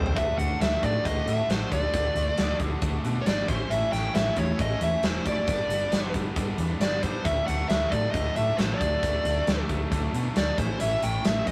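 A straight 4/4 groove at 135 BPM drives this gritty, swaggering slice of blues rock power trio and southern rock, cut from a longer piece and tuned to A4 = 442 Hz. A drum fill opens things at 0.0 seconds, and the big acoustic kit, with its tight kick, medium-tuned snare, hi-hat and toms, sits up front with a mid-forward, rolled-off top. Underneath, a growling fingered electric bass, overdriven and punchy, holds the low end from E1 to B2, while a cranked, double-tracked stack guitar rings bright and picked through its riff. Over them, a dark, smooth lead guitar, overdriven and placed up front, carries the melody between C5 and G5 as the chords move from D to A, G, D and back to A by 10.6 seconds. The rough rehearsal-room recording has a moderate small-room reverb that gives the trio a raw, close-quarters punch.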